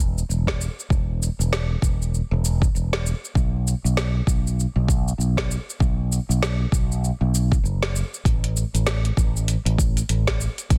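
A swung sixteenth-note groove in 4/4 drives this hypnotic organic downtempo passage, where an overdriven afro-pop kit of cabasa, metallic hi-hat and woody snare meets a deep, tape-warm electronic kick joining up front at 0.5 s, while a bright, punchy fretless electric bass with subtle chorus and sidechain pumping holds the low end, all in a dry, dense, heavily limited modern mix that shifts into a new section at 8.3 s.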